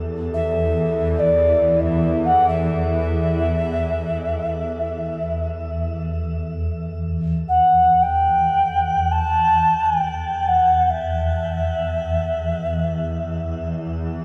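Meditative and haunting, this world-flavored meditation music drifts in free time, a brief passage cut from a longer piece. A shimmering ambient pad holds a low E2 drone throughout, its detuned, sine-like unison tone arriving with a slow attack and sustaining into a long release, thickened by an octave-up shimmer, granular texture, chorus and its own reverb, sitting dark yet ethereal near the front. Over it an alto ocarina enters at 0.3 seconds to carry the melody, its pure clay voice shaped with vibrato and tongued notes, placed up front and trailed by shimmer reverb and tape echo. A bronze singing bowl rings softly in the background until 6.8 seconds, its mellow, metallic tone struck with a felt mallet, beating slowly and bathed in shimmer reverb. The performance sits in a wet studio reverb that lends a gentle sense of space.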